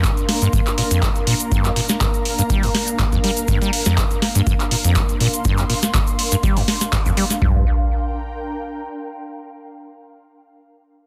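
A swung 4/4 groove at 122 BPM in G minor drives this trippy, gritty acid house excerpt, built on a booming analog drum machine with a deep kick and toms up front, a tonal snare, handclaps and metallic hats in a short room, and a grainy, close tube shaker in the background. A squelchy, resonant sawtooth acid bass riff with overdrive, filter sweep and digital delay cuts through a moody, detuned sub-octave pad that pumps under sidechain, while an ethereal, airy pad with ensemble chorus and built-in reverb floats above. After a band accent at 6.9 seconds the drop breaks off at 7.4 seconds, and once the bass clears at 7.6 seconds the airy pad hangs alone until 9.3 seconds over a dense, heavily limited master.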